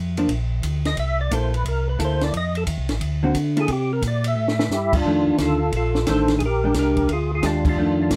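Heard in a tight, wet booth, this swinging fragment of a bluesy, greasy soul jazz organ trio sets a round, mellow tonewheel organ bass with key click and slow rotary speaker against picked, compressed hollow-body electric guitar chords and a dry cocktail drum kit with a high-tuned snare, punchy kick, dark ride, crash and hi-hat, before a fat, percussive tonewheel organ enters up front at 0.9 seconds to solo with third-harmonic percussion, chorus vibrato and slow rotary swirl, a brief drum fill at 4.4 seconds leads into the next section, and the band hits an accent at 7.6 seconds.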